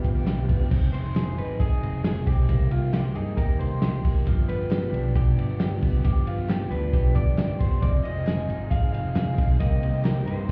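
This restless, wistful slice of jangly indie pop, cut from a longer piece, opens at 135 BPM in a straight 4/4 on a G7 chord. A loose indie drum kit sits up front with a fat snare, punchy kick and dark, rolled-off cymbals, all roughened by vintage 12-bit sampler grit. Beside it, a round, foam-muted picked bass holds the low end. In the background, an overdriven semi-hollow guitar and a compressed, twangy clean guitar playing arpeggios fill out the harmony, while a very quiet group handclap adds a hollow, dry touch. A reedy combo organ with heavy vibrato sounds briefly until 0.7 seconds and returns at 7.8 seconds. At 0.9 seconds a bright, slightly broken-up lead guitar through a small old amp enters with the melody over a moody progression of Fm7, Cm7 and G7. The whole mix sounds muffled, as if heard through a wall, with club reverb and small-room ambience.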